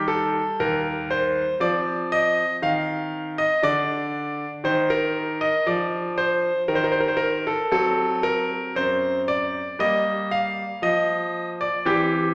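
In a rubato 4/4 at about 58 BPM, a solo grand piano plays a flowing, radiant baroque-style suite movement in a classical vein, a passage cut from a longer piece. The brilliant, polished piano sits up front with a deep bass, spanning Eb2 to F5 as the harmony moves from Eb through Cm11/D and F#dim to Gm. A wet recital hall reverb with a 1.4-second decay surrounds the instrument.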